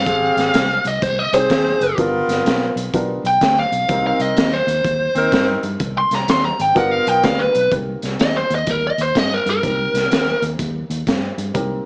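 A swung 4/4 shuffle at 125 BPM drives this brooding, smoky electric blues fragment in C minor, where a biting, overdriven lead guitar solos up front until 7.7 seconds over a round, foam-muted fingered bass and a gritty, saturated breakbeat kit with a high-tuned snare and tight kick, while a tight, dark saxophone section punches stabs through analog delay until 7.6 seconds and a mellow, woody upright piano enters in the background at 1.3 seconds, the whole mix carrying a small-speaker sound and moderate studio reverb as the chords move from Abmaj7 and G7#9 to Cm7.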